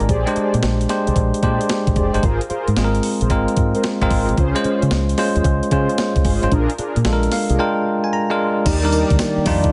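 A bell-like tine electric piano sits up front in this bouncy, upbeat new jack swing excerpt, its bright, clean chords carrying the harmony through Bb13, Ab69, Dbmaj7 and Bb7 before a fill from 7.1 to 8.7 seconds. Beneath it, a deep dub fingered electric bass gives a dark, round, punchy low end, while a clean 12-bit digital drum machine supplies a thumpy kick, medium-tuned snare, hi-hat, tambourine and crash with a sampler-style, tape-warm character and a swung sixteenth-note feel. The drums drop out from 7.6 to 8.7 seconds, leaving the piano fill to ring over the bass and brass before the music moves to Ebmaj7. Mellow synth brass stabs sit in the background with a detuned sawtooth edge, a filter sweep, vibrato and chorus. In the final moments, from 9.1 seconds, a shimmering, retro pulse-width pad enters with slow-attack sustained chords, adding ring modulation and a moving notch under light reverb.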